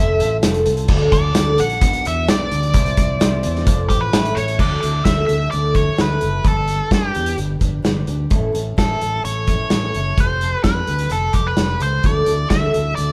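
Warm and jangly, this excerpt from a longer folk rock and heartland rock piece moves at 129 BPM in a straight 4/4, opening in D mixolydian before settling into D major at 4.6 s. A nasal lead guitar with a parked wah carries the melody up front, its dark, overdriven tone sitting between G4 and F#5. Beneath it, a picked twelve-string acoustic guitar supplies shimmering, octave-doubled accompaniment with a boxy body, while a fingered electric bass holds down the low end with a warm, direct-and-amped sound. A loose indie drum kit enters at 0.2 s with a punchy kick, medium-tuned snare, hi-hat and dark crash cymbals, its rolled-off top and pumping room presence placed up front. The band plays live in one room under a moderate large studio reverb, moving from a quick F, D, Bm, C, F, A sequence into broader chords, mostly add9 voicings, beginning with Dadd9 at 4.6 s and returning there at 12.0 s.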